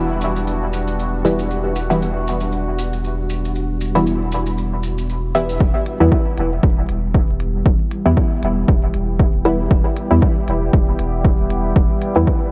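A lightly swung 4/4 groove underpins this short, hazy dub techno cut, carried at first by grainy acoustic maracas from 0.2 s until 5.6 s, when a punchy electronic kick takes over up front, joined by smooth, layered hi-hats at 5.9 s. Beneath them, a round sine sub bass holds the low end with a fast attack and long sustain, pumping against the sidechain. The centrepiece is a muted, detuned sawtooth chord stab with a filter pluck and short decay, its mellow tone colored by chorus and phaser and trailed by dub echo. Behind it, a moody ambient pad of unison sawtooth and sine layers with a sub octave, wave-folding and ring modulation swells in slowly and lingers on a single minor chord, bathed in chorus and its own reverb. Light digital ambience and a steady bed of vinyl crackle give the whole deep, shadowy mix a worn, smoky patina.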